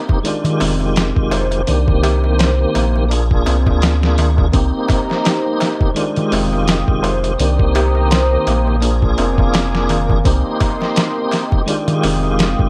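Gritty, overdriven boom bap drums with a thumpy kick sit up front in this brooding, melancholic trip hop excerpt at 84 BPM in C minor, swung gently on the sixteenths, with a small, crisp metal-shell darbuka adding percussion in the background. A round sine sub bass and a clean tonewheel organ, spun through fast rotary speaker, chorus vibrato, tremolo and tape echo with audible key click, carry the Fm9, Cm7 and Bb7 changes, while a soft felt-muted upright piano plays intimate arpeggios roughened by 12-bit sampler grit and delay. From 4.8 seconds a dark, detuned sawtooth analog pad swells in with slow-attack sustained chords, all held in light digital ambience.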